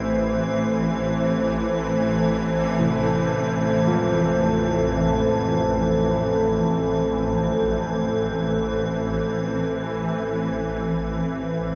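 In free time, this dark ambient drone unfolds as a cavernous, desolate fragment cut from a longer piece, tuned to A4 = 442 Hz and resting on a single F/A chord for its 11.8 seconds. Up front, a deep, moody analog pad holds sustained sawtooth-and-triangle chords with a sub octave and chorus. Beside it, a swarming, tense drone of detuned sines churns low with a granular, evolving texture. Alongside them, an icy, crystalline glass pad sits quieter, its airy noise layer and moving notch adding a bright shimmer. At 2.8 seconds, carillon bells enter in the background with bronze, ringing arpeggios through tape echo, playing until 10.3 seconds. A huge wash of reverb and a cassette-tape grain hang over the whole mix.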